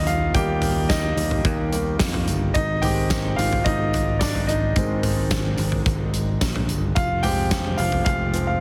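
An intimate concert grand piano with audible action noise and long sustain leads this anthemic, hopeful piano-driven pop excerpt, moving from Eb to Ab and Fm over round, punchy fingered electric bass, a huge arena drum kit with a fat snare and punchy kick, and a jingly tambourine in the background, all in a dry, heavily compressed radio sound.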